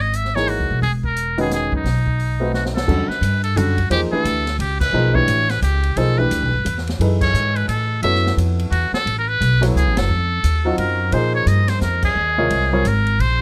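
A swung waltz feel drives this modal jazz excerpt, its lilting three-beat pulse carried by an upright bass played pizzicato, woody and up front, and an open jazz drum kit with dark cymbals, a high-tuned snare and a boomy kick. The mood is cool and searching, with the harmony drifting through rich extended chords such as C#m9, Em11 and Bb9sus4. Out front, a trumpet with a metal mute sings the melody in a buzzy, thin, vintage tone, with vibrato, soft attacks and scooped notes. A baby grand piano supplies warm, intimate accompaniment with short sustain and audible action noise. A drum fill at 2.5 seconds leads into a new section, and band accents punctuate the passage at moments such as 4.8 and 12.0 seconds. The sound is dry and closely miked, revealing fine detail in every instrument.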